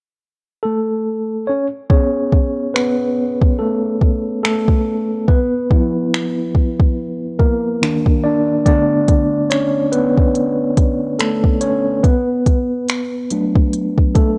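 A mellow, clean tine electric piano heard through its built-in speakers opens this smooth, tender contemporary R&B piece at 0.6 s, and at 1.9 s it moves into an up-front solo over chords such as Amaj7, Bm7 and F#madd11, joined by an electronic, overdriven drum kit of finger snaps, smooth hi-hats and a soft kick in a gently swung groove, all captured as a dry, gritty cassette-tape recording.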